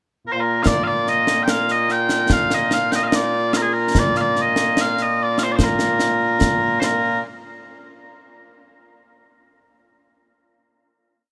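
Mellow small bagpipes carry a sweet, continuous solo melody up front, a modal line dressed in ornaments that spans from Bb2 to G5 in Bb major. This is Scottish traditional pipe music, a complete short piece in 2/4 at 73 BPM with a straight, ceremonial and stirring feel. The pipes begin with a pickup at 0.3 seconds, and the concert snare drum and concert bass drum join at 0.7 seconds, playing a marching snare pattern with bright cymbals in an acoustic, live room sound that also sits up front. Both parts carry a single section through to 7.2 seconds, after which a final hit rings out until 8.9 seconds. Light reverb gives the whole a touch of space, and the tuning sits at A4 = 439 Hz.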